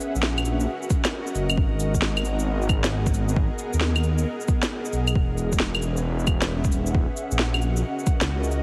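Future garage at 134 BPM in G# minor, swung on the sixteenths, with a nocturnal, ghostly mood; this short cut from a longer piece moves through D#m7, G#m9 and E69 chords, carried by a mellow, airy pad of detuned triangle and sawtooth voices with a sub octave, slow attack, ensemble chorus, built-in reverb and sidechain pumping. Underneath, a menacing, saturated detuned saw bass with a filter swell pumps up front, while electronic cabasa, shaker, claves and a woody snare, re-recorded in a large room, sit forward in the mix. A deep, tape-warm layered kick enters at 0.9 seconds and drops out briefly at 1.1 seconds, and the whole track carries a heavily compressed radio sound with vinyl crackle and light reverb.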